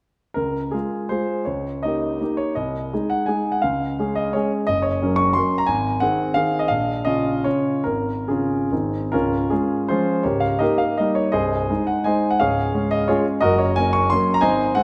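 Graceful and rustic, this romantic classical dance for solo concert grand piano moves in 3/4 with dotted rhythms and a rubato feel, its tempo drifting between 134 and 192 BPM in Db major. The clear, natural piano sits up front with a deep bass reaching down to C1, ringing out in a wet concert hall reverb as a short phrase built on Db, Eb7/Db, Ab/C, Gb and Bbm harmonies plays through and begins again at 9.1 seconds. Cut from a longer piece, it breaks off at 14.8 seconds.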